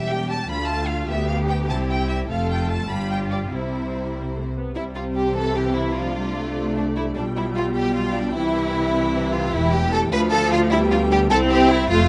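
Close, detailed microphones and a light reverb give this brief cut from a longer piece an intimate, present sound. It is a quick, lively and graceful classical-period movement for symphony orchestra in C major, moving in a straight 6/8 at 100 dotted-quarter beats per minute. One violin section carries a smooth, even melody in a high register. A second, more expressive violin line sits up front and closer, a little louder than the tune above it. Beneath them, a focused viola section supplies rich bowed accompaniment, while a distant cello section and an intense, clear double bass section share the bass line. After an opening passage, a warm French horn section enters at 4.8 seconds with sustained chords in the background, filling out the second section through to 12.1 seconds as the harmony cadences back to C.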